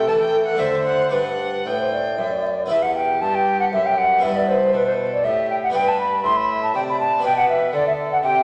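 Through a wet recital-hall reverb and a layer of vinyl crackle comes a dance-like, radiant baroque-style sonata movement in 3/4 with a rubato feel, cut from a longer piece: an airy, hollow concert flute with a crisp attack sits up front on the second line above a smooth, rich violin melody sung with vibrato, while a full, plucked harpsichord accompanies and a distant, roomy solo bassoon carries the bass.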